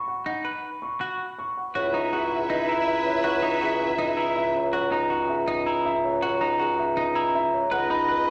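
Bell-like glockenspiel arpeggios, struck with soft plastic mallets, ring out over this urgent yet meditative stretch of minimalist classical pattern music, which is cut from a longer piece. A dark concert grand piano with a boxy low end and long sustain carries the melody from the opening, while a clean, compressed semi-hollow electric guitar picks steady arpeggios alongside it. Bowed studio strings enter with focused sustained chords at 1.7 s, and at 1.8 s a mellow bassoon settles into a single low bass note as a soprano saxophone, close-miked with a soft attack, hovers in the background on a quiet second line. The strings and saxophone drop away at 4.5 s and return at 7.7 s as the harmony moves from a minor eleventh chord to a B-over-C# slash chord. A wet recital hall reverb wraps the ensemble in a spacious ambience.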